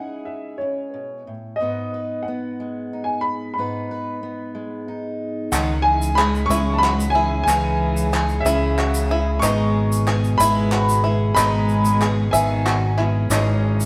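Indie folk in a straight 6/8, wistful and stirring, this excerpt from a longer piece opens with a slightly detuned, woody upright piano carrying the melody over a dark, fingerpicked steel-string acoustic guitar. At 5.5 seconds the arrangement builds as a round, up-front fingered electric bass, a second picked acoustic guitar, hollow group handclaps and a grainy tube shaker arrive together, joined by a bowed cello playing an expressive second line with vibrato and portamento. A classical-style brass section sits in the background holding sustained chords, while a twangy, bright banjo played with fingerpicks adds percussive arpeggios from 6.2 seconds. The first guitar drops out at 7.5 seconds. The harmony moves between C#madd9 and G#m. In the closing moment a clear, worn concert grand with deep bass and short sustain joins the accompaniment, all set in a moderate stone room as if the band were playing live together.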